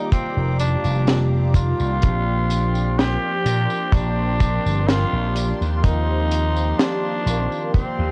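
A slow, straight 4/4 pulse at 63 BPM anchors this woozy, dreamy vaporwave fragment in Bb major, cut from a longer piece, with a dry, tight kick sitting up front and a deep reggae kit adding hi-hat, tambourine and a high-tuned snare in a small room reverb from 0.1 seconds. A vintage slap bass, electric and amped, joins at 0.4 seconds, moving between F1 and Bb2 and sitting forward in the mix. Over this, a breathy tenor saxophone carries the melody between C4 and G4, its raspy, gritty pop-style tone trailed by tape echo. Mellow synth brass fills in the accompaniment with a round, detuned sawtooth sound under analog chorus, vibrato and a filter sweep, while a rich chamber string section holds close, bowed chords with light vibrato in the background. The harmony moves from F13sus4 to Bb69 at 2.0 seconds and Eb69 at 5.8 seconds, and the whole mix is coloured by worn cassette tape with warbly pitch drift and light small-room ambience.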